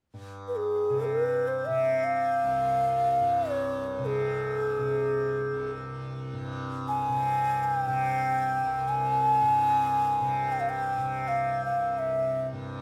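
A mellow, hollow bansuri sits close and up front, its airy bamboo tone and crisp attack carrying a meditative, serene Indian classical melody from 0.5 seconds over a softly plucked tanpura drone that buzzes and shimmers beneath it, all held in a moderate small-room reverb.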